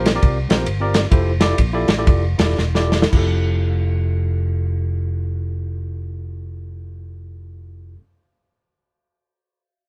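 Uptempo gospel in F major and swung 4/4, reverent and soulful, with the tempo slowing from the opening through 3.1 seconds as the drums play a fill from 2.6 seconds before stopping at 3.3 seconds. A dry, dark soul drum kit with a tight kick, medium-tuned snare, ride and crash sits up front alongside a round, amped fingered electric bass, while a worn, slightly out-of-tune tine electric piano plays clean accompaniment through its built-in speakers, moving from C7sus4 to Fmaj9. The band plays live in one room with light reverb, and the passage is cut from a longer piece.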